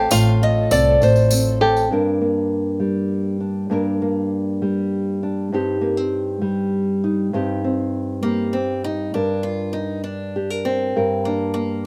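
A dark, fingerpicked nylon-string guitar sits up front throughout this short acoustic folk excerpt in a straight 6/8, carrying the accompaniment through a moody progression of F/A, Gm and Cm/G. The opening moments gather a small band: a woody, boxy archtop guitar picks the melody, a twangy banjo played with fingerpicks spins arpeggios through a slapback echo, a pizzicato upright bass anchors the low end, and a jingly tambourine adds close, dry percussion. A very quiet, metallic resonator slide guitar adds a nasal second line. By 1.9 seconds the others have dropped away, leaving the nylon-string guitar alone for a long stretch. The archtop returns with its melody at 8.2 seconds, its old strings lending a worn character to the intimate, haunting mood of this dry outdoor recording.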